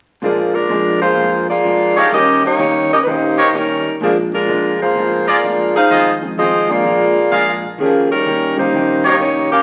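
Swung eighths drive this joyful, brassy big band excerpt, cut from a longer piece and heard through the crackle of a very old 78 rpm record. A tight, close-miked saxophone section carries the melody up front with a soft attack, while a clean, picked hollow-body electric guitar and a dark, mellow grand piano fill in the accompaniment, the piano sitting in the background with its action noise audible. Beneath them, a woody pizzicato upright bass plays very quietly. At 2.0 seconds a bright trumpet section joins up front with soft-attack stabs and light vibrato. The harmony moves from Bb7 to Eb7 and back, then through Fm7 and Bb7 before landing on Eb7, all bathed in the wet reverb of a large studio.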